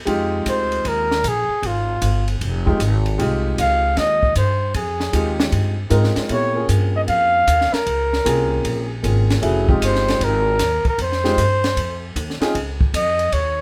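A natural-toned grand piano, woody upright bass and compact cocktail drum kit open this small-group swing and bop excerpt together, setting a cool, late-night mood with a lilting swung feel. Within half a second a flugelhorn takes the melody as the featured soloist, sitting up front with a soft attack, light vibrato and scooped notes in a warm jazz style. The plucked steel-string bass is growly and close, while the dry kit pairs dark ride and hi-hat cymbals with a high-tuned snare and a punchy kick. The piano comps in its middle register and drops out at 12.5 seconds as the harmony arrives on a closing Db chord, leaving horn, bass and drums to finish the passage. A light reverb gives the group a gentle sense of space, and the clip ends at 13.6 seconds, cut from a longer piece.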